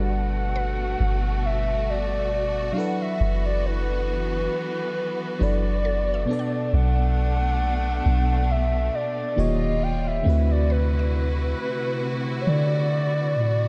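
Tender and dreamy, this slow R&B excerpt with a light swing floats on a soft, round 808-style bass sitting up front, while a glassy, bell-like FM electric piano with chorus provides accompaniment and a lush bowed string section holds sustained chords beneath. A hollow, woody clarinet-like synth lead carries the melody with vibrato, chorus and analog delay, and a very quiet mallet-like synth pluck adds percussive texture from 0.6 to 12.1 seconds. The whole mix is soaked in a moderate, lush hall reverb with a dark, softened top, and the harmony drifts from Gmaj9 through Bm7 to a colourful Eb9 before settling on D13.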